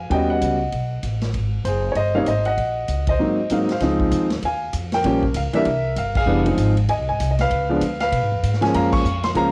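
An intimate grand piano carries the melody from the first moment over thumpy, woody pizzicato upright bass, with a distant, roomy drum kit of dark cymbals and a boomy kick joining at 0.1 s in this playful, sophisticated jazz trio swinging at 195 BPM in 4/4. Rich altered and extended chords give way to Db major at 3.8 s, and the band hits shared accents at 3.0, 6.1 and 8.9 s. The up-front piano, with audible action noise and long sustain, and the rolled-off drums both carry a cassette-tape tint in a dry home recording tuned to A4 = 438 Hz, cut from a longer piece.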